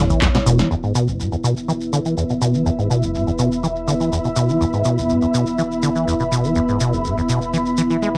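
Raw and trippy, this acid house excerpt opens with a brief overdriven drum-machine fill of punchy snare, handclaps and metallic hats as a squelchy, resonant sawtooth acid bass riff takes the lead over a moody, detuned dark pad with chorus, a round, deep analog bass in the background, a grainy, close shekere and, from 1.9 seconds, an ethereal, airy pad with ensemble chorus and reverb, the synth parts pumping to the sidechain in a wet booth captured on home cassette.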